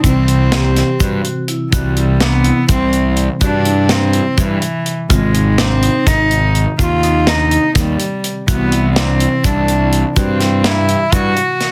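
A dense, heavily limited modern master in a small, moderately reverberant room carries this bright, driving progressive instrumental cut from a longer piece in an uneven 7/8. Up front, a single bowed cello sings the melody with a soft, floating, sul tasto tone over punchy, fuzz-overdriven picked electric bass and a mid-forward acoustic kit with a punchy kick, medium-tuned snare and hi-hat. Further back, a dry, ringing vibraphone with slow motor vibrato plays arpeggios, a very quiet, clean electric piano with tremolo adds accompaniment, and a grainy tube shaker rustles, while the harmony moves from C to Ab at 5.1 seconds and returns at 8.5 seconds.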